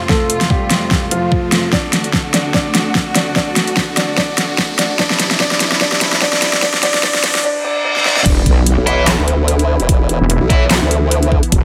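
A rich, distant studio string section opens this aggressive, chaotic slice of heavy wobble dubstep, holding lush bowed chords with vibrato, roughened by 12-bit sampler grit, pumping with sidechain compression and muffled by a low-pass filter. A dark, mellow grand piano carries the melody through a filter sweep and digital delay, while an overdriven, knocking electronic kick and an up-front dubstep kit with a huge snare, handclaps, hi-hat and crash drive a half-time feel at 147 BPM in E minor, with drum fills and a riser building tension over chords moving from F to D to C. Background sound effects add the riser, then a reverse cymbal from 7.4 seconds into the drop at 8.3 seconds, where an impact lands. There a heavy, detuned sawtooth wobble bass bursts in, saturated and compressed with chorus, soon joined by a formant-sweep wobble bass built from pulse and sine tones. Bright, picked stabs from a tight distorted guitar with digital delay cut through the low end, all set in a moderate digital room reverb.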